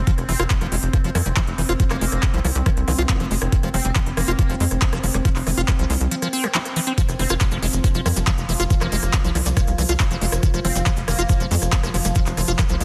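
An overdriven electronic kick knocks up front through this hypnotic, driving psychedelic trance excerpt at 139 BPM in a straight 4/4, tuned slightly low to A4 = 439 Hz and resting on an F5 chord. Beneath it, a tight, punchy sequencer bass mixes sawtooth and square waves with ring modulation and a saturated filter pluck, while a squelchy, resonant acid bass riff carries chorus, a filter sweep and digital delay. A big-room dance drum kit adds crisp hats, handclaps and rim clicks with a tape-tinged, roomy character. An overtone-sweeping drone holds slow-attack chords with built-in reverb and chorus, and a metallic FM wobble bass growls in the background with 12-bit sampler grit and tape echo from 0.3 seconds, dropping out and returning at 7.2 seconds. A very quiet electronic zap flickers briefly, a grainy, vintage cabasa joins at 7.0 seconds, and the drone, acid riff and wobble bass pump with sidechain compression in a dense, heavily limited modern master.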